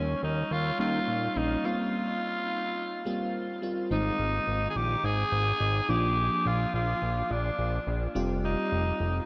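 Urgent yet nostalgic, this 1980s-style pop passage at 106 BPM in straight 4/4 puts a raspy, gritty tenor saxophone melody up front with a diffuse ambient delay, over a lush FM electric piano with a soft pad layer shimmering through chorus and phaser and a fat, saturated analog bass. The mix is soaked in huge, dreamy reverb as the harmony moves from Eb7 through a break at 1.6 s into a new section beginning on Ab at 3.9 s.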